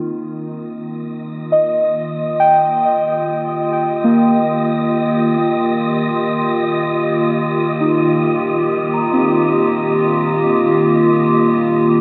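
In free time, this peaceful, luminous ambient passage, cut from a longer piece, rests on a single Ebadd9 chord in Eb major, tuned to A4 = 439 Hz. A warbly, tape-like pad sits up front with sustained chords; its detuned, nostalgic lo-fi tone, dark and vintage with a sub octave beneath, carries chorus and its own reverb as it fades in across the whole 12 seconds. Alongside it, muted felt-like synth keys play soft, intimate arpeggios with a fast attack and decaying notes, coloured by chorus and delay, and they gradually fade out over the same span. From 1.2 seconds, a breathy, wind-like tuned noise texture drifts in high above, faint and airy with its own reverb, slowly fading in. The whole passage is bathed in a huge, wet reverb with a 7.6-second tail, placing it in a vast, echoing space.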